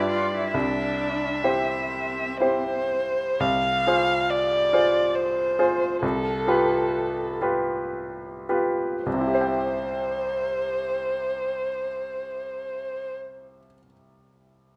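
A moderate recital-hall reverb surrounds this tender, lyrical passage from a slow romantic movement for piano trio in C major, moving in 3/4 with a rubato feel between 52 and 71 BPM and slowing through its middle stretch. An up-front, warm violin sings the smooth, even melody with vibrato, joined only until 2.9 s by a rich, focused cello second line. A bright, brilliant grand piano supplies polished, short-sustained accompaniment over harmonies moving from G7 to C and through Fm/C, continuing alone after the violin stops at 13.2 s until 14.8 s.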